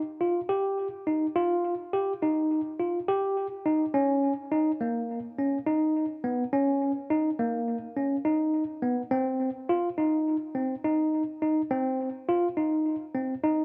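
Bright and intricate, this short progressive instrumental excerpt in 9/8 at 209 BPM features a lone tine electric piano, clean and up front through its built-in speakers with tape echo, playing alone from 0.2 to 13.6 seconds in a moderate studio reverb as the music shifts into a new section at 9.1 seconds.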